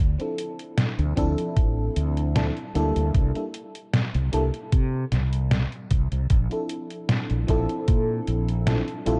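Dark, cassette-tape production with light reverb and a digital ambience gives this short vaporwave excerpt a faded, nostalgic haze. A bright, up-front fretless electric bass opens the clip at 0.0 seconds, carrying a subtle chorus. From 0.2 seconds, an FM electric piano layered with a soft pad adds lush, dreamy accompaniment; its detuned, triangle-like tone with a noise layer has a fast attack and decays, colored by phaser, chorus and tape echo. A detuned 8-bit digital drum machine supplies hi-hat and a medium-tuned snare with a sampler-style character, re-recorded in a small room, and a thumpy electronic kick drum sits prominently in the mix from 1.2 to 8.0 seconds. The harmony drifts from Dm9 through a chordless stretch into Bbmaj9#11, holding a straight, unhurried pulse in 4/4.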